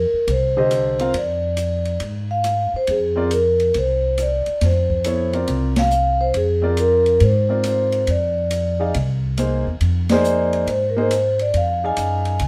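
Cool and hypnotic, this modal jazz excerpt swings at 138 BPM in F dorian over a sustained Fm6 chord, with a mellow soft-mallet vibraphone ringing out the melody up front, a woody pizzicato upright bass anchoring the low end, an intimate grand piano with audible action noise comping from 0.6 seconds, and a dark small-room drum kit of hi-hat, kick, ride, rim click and snare joining at 0.3 seconds, as the band hits accents at 5.7 and 10.0 seconds under light reverb.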